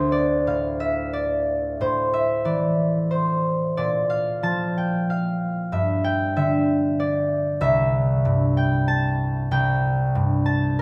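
A solo concert harp opens this brief classical passage, its fingerpicked strings bright and ringing as they sit up front in a light reverb. The mood is mysterious and wistful, with rubato and uneven beats in three-four time, moving through Dm7, Am, Bb69, G5 and Cadd9 over 10.8 seconds, with the instrument tuned to A4 = 439 Hz.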